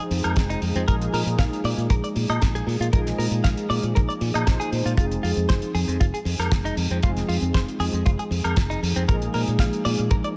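A lightly reverberant mix carries this sensual, groovy nu-disco excerpt at 117 BPM in F minor, where a dry, tight, up-front kick and a damped 70s drum kit with fat snare, hi-hat and woodblock sit under a bright, growly fingered electric bass, a clean, compressed direct-recorded electric guitar riff with subtle chorus and diffuse delay, and mellow, round, detuned synth brass with chorus, vibrato and a filter sweep, all circling Fm7 and Bb7sus4.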